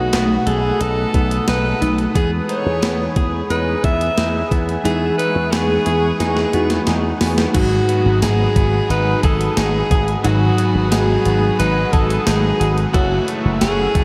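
A bright alto saxophone with light vibrato leads this moody, urgent 1980s-style pop excerpt at 89 BPM in 4/4, sitting up front with an analog delay on its melody. Beneath it, a growly, punchy slap bass run through an envelope filter drives the low end, while a clean 12-bit digital drum machine with a thumpy kick, medium-tuned snare, hi-hat, tambourine and crash cymbal enters at 0.1 seconds, its tape-warm sound re-recorded in a large room. Glassy digital keys with chorus and a filter sweep play in the background, a dark, detuned analog pad holds sustained chords with a slow attack, and a twangy, compressed clean electric guitar recorded direct picks out a riff with subtle chorus. After a drum fill, the harmony moves from B7 and Emaj7 to G#m7 at 7.5 seconds, where a very quiet, pure FM synth bell adds a second line with chorus and phaser, and a double-tracked overdriven guitar bites in softly underneath. 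The whole mix is soaked in a huge ambient reverb, giving it a dreamy haze.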